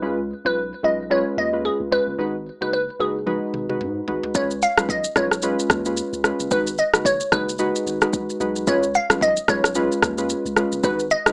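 Sultry and smooth, this afrobeats groove moves at 111 BPM in 4/4, with a 58% swing on the sixteenths giving it an easy lilt. A glassy, nasal wavetable pluck carries the melody up front, its crystalline tone softened by chorus and a low-pass filter. Beneath it, round, full-bodied analog keys with a detuned, dark character supply the accompaniment, also treated with chorus and a low-pass filter, while a filter sweep runs through the opening 4.3 seconds. A punchy sine sub bass with a pitch-drop attack anchors the low end as the harmony alternates between C#7 and G#m7. The electronic afro-pop drum kit arrives at 3.3 seconds with a fill, then carries on from 4.3 seconds with a deep kick, rim click, shaker and toms. Light reverb and a small-speaker sound colour this passage, which is cut from a longer piece.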